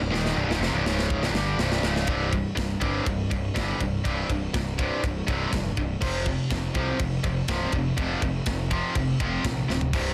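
A straight 4/4 pulse at 122 BPM drives this heavy, epic heavy metal excerpt in C minor, where a bright, double-tracked distorted guitar riff sits up front over a round, fuzzy overdriven picked bass. A tight acoustic drum kit with a medium-tuned snare, tight kick, crash, ride and toms opens with a fill from 0.1 to 2.1 seconds and adds another fill at 9.7 seconds, while the harmony moves from a C minor chord to C5 and F5 power chords, all in a small room under a dense, heavily limited modern master.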